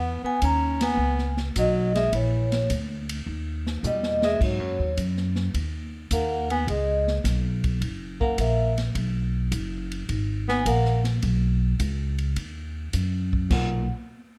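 Ringing vibraphone carries the melody while a dark, smooth-topped baritone saxophone weaves a second line beneath it, and a woody, thumpy upright bass sits up front, plucked with a warm pizzicato in this sophisticated small-group swing excerpt. An airy, polished drum kit with a punchy kick and medium-tuned snare joins at 0.4 seconds, driving the band to a shared accent at 0.7 seconds and a drum fill from 3.8 to 4.4 seconds. The vibraphone's metallic tone and slow motor vibrato ring through the light reverb as the passage settles into lush extended harmony.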